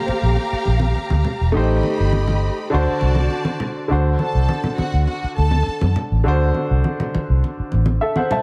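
Silky and cinematic, this fragment of lush 1970s-style soul opens on a clear, intimate grand piano with audible action noise alongside an expressive bowed string section with vibrato and portamento, soon joined by a delicate, slightly out-of-tune celesta in the background; strings and celesta both stop at 5.9 s. Underneath, a dark, foam-muted fingered electric bass sits round and punchy up front, while low-tuned, thick-skinned congas played with soft hands add damped vintage color over a Bbmaj13, Am7b5 and D7 progression. A light reverb and small room ambience frame the sound.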